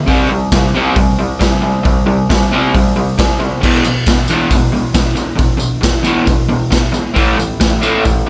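A crunchy, double-tracked, picked electric guitar riff sits up front in this gritty, swaggering garage rock excerpt at 135 BPM in E minor, moving through C5, E5 and A5 chords over a raw, saturated acoustic drum kit with boomy kick, medium-tuned snare, hi-hat and crash in a bright, pumping stone room, while a jingly tambourine joins in the background at 3.6 seconds, with light reverb over the mix.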